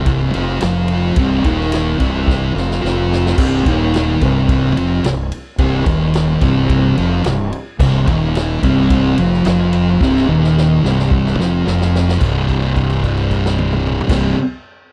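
A thick fuzz guitar dominates this heavy, gritty slice of blues rock power trio and southern rock, its double-tracked, picked riff sitting up front in the low register from the first second. Underneath, a fingered electric bass with overdrive adds a round, punchy fuzz of its own, while a vintage acoustic drum kit with a medium-tuned snare, punchy kick and rolled-off top moves through crash, ride and toms at a straight 109 BPM in 4/4. The music rests on C minor, with drum fills marking the turns at 2.3 and 10.0 seconds before the harmony shifts to a bare C5 at 12.2 seconds, where a held note carries the closing section. The sound is dry and close, with a small room ambience and the natural character of a 1970s-style studio recording. This is a short cut from a longer piece, tuned slightly high at A4 = 445 Hz.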